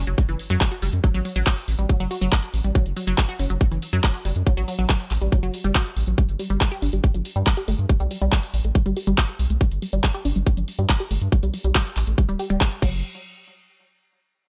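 A tight, up-front electronic kick drives a straight 4/4 pulse at 140 BPM, setting a driving, hypnotic psychedelic trance groove in this short cut from a longer piece. A layered drum kit adds crash cymbal, handclaps and hi-hat from 0.1 seconds, while a round analog bass, dark and deep with a fast attack and sustained tone, holds the low end from D1 to G2. Opening the passage is an impact with a very quiet sub drop, gone by 1.0 seconds. A lush, punchy unison pluck built from detuned sawtooth layers with a noise layer and a moving notch carries the riff between E3 and G4, its short decay treated with sidechain pumping and delay. A filter sweep on the synth arpeggio sound runs across the whole passage as the harmony moves from F#5 to G5 at 6.2 seconds, and the dry mix keeps every hit forward and present.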